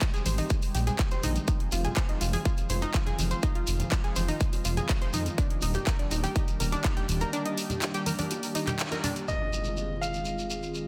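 Driving yet dreamy, this short cut from a longer progressive house piece moves at 123 BPM in a straight 4/4, set in F dorian and tuned slightly below standard pitch, with chords moving from Abmaj7 through Fm7 and Ebmaj7. A punchy, overdriven electronic kick sits up front alongside a layered house kit of handclaps and bright, filtered hi-hats, while bongos, congas and a grainy, mellow shekere sit in the background. A deep, rumbling detuned saw bass growls beneath an airy, breathy pad of sustained chords and a round analog pluck arpeggio carrying chorus and dub echo, the bass, pad, pluck and hand drums all pumping to the sidechain. The kick drops out from 7.3 to 9.3 seconds, with a band accent at 8.8 seconds. At 9.3 seconds an electronic impact lands as a brilliant, intimate grand piano enters with a brief delayed melody, its action noise audible, over a return to Fm7. Light digital ambience surrounds a dense, heavily limited modern master.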